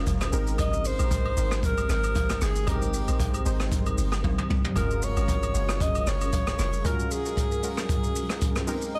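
A relaxed, swung sixteenth-note groove in common time carries this amapiano excerpt, set by a jazz brush drum kit with a boomy kick, hi-hat, rim click, shaker and toms, sitting up front in a small room with a rolled-off top; a drum fill arrives at 4.2 seconds. Underneath, a deep log drum bass gives round, dark, percussive hits with a fast attack and a noise layer before dropping out at 6.8 seconds, while woodblock and agogo bells sit compressed and saturated in the background. Analog keys with a detuned sawtooth tone, a filter sweep and chorus play mellow accompaniment over chords that move from G#maj9 to F#maj9, and a very quiet granular cloud pad holds blurred, evolving chords bathed in built-in reverb. A breathy alto saxophone carries the melody from 0.6 seconds, singing with vibrato in a pop style. The master is dense and heavily limited, and the mood stays warm and easygoing throughout.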